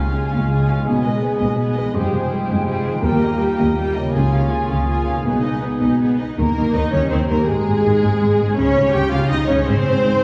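Heard from further back in a small room and bathed in the wet reverb of a scoring stage, this cinematic 6/8 passage, cut from a longer piece, feels adventurous and triumphant. A lush, focused violin section carries the melody with vibrato over a smoother, more distant second violin line, an intense viola accompaniment, even bowed cellos and woody double basses, while a bright concert harp rings out arpeggios in the background. Through the opening build-up, an airy silver flute, a close-miked cor anglais, a very quiet dark clarinet and a roomy French horn section holding sustained chords add colour, and all four stop by 6.2 s, leaving the strings and harp for the closing section.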